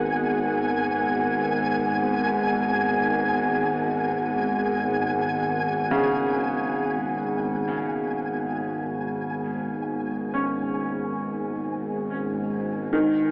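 This dark ambient drone in G# minor opens with all four parts sounding together in free time, settling on a single G#madd9 chord for the whole passage, which is cut from a longer piece. Up front in the mix, a string-like, bowed-like drone holds G#1 to G#2, its tense sawtooth edge roughened by a noise layer and ring modulation and softened by vibrato and its own reverb. Above it, a deep, detuned analog pad sustains moody chords with chorus and a sub octave, while a clear but worn grand piano plays short-sustained arpeggios through an analog delay in the range C#3 to C#4. A flickering, grainy granular texture hangs on a high G#5, set up front with built-in reverb. A wet plate reverb and an echo-heavy, AM-radio-like mix give the dark, desolate piece a distant, hollow character until the piano and drone end at 13.3 seconds.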